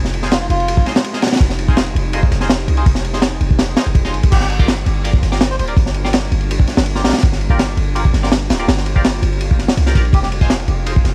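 Drum and bass with a jungle lean, dark and atmospheric, built on a crunchy, saturated breakbeat kit with a punchy kick, high-tuned snare and dusky cymbals, set up front beside a deep, boomy 808-style bass. An ethereal, detuned pad with ensemble chorus and reverb sustains chords in the background, while a nasal, band-passed chord stab with phaser and dub echo recurs throughout, moving from Fm7 to Gm7 at 4.3 seconds. A reedy, breathy melodica with dub echo drifts in briefly at 0.3, 4.3 and 10.1 seconds, all over a small room ambience and vinyl crackle.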